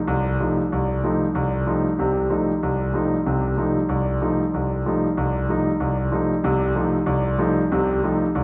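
A lilting swing feel in four carries this brief, searching and spiritual jazz fragment, cut from a longer piece, in which a solo grand piano, warm and natural in tone and set up front, voices an F9 chord in its low and middle register from 0.1 to 8.4 seconds, bathed in the lush, lingering reverb of a concert hall.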